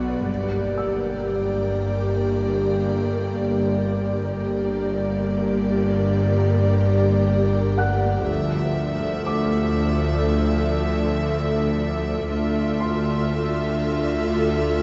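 Cinematic suspense film score at 60 BPM in 4/4, tense and eerie, where a dark, intimate violin section carries a sul tasto melody over a close viola section's soft-attack accompaniment, a calm organ-like pad with ensemble chorus, a dark double bass and floating cello section underneath, a detuned, ring-modulated bowed-like drone, and a boxy grand piano with audible action noise, all moving from Gm to Dmadd9 at 8.3 seconds in a church reverb that dulls the highs, cut from a longer piece.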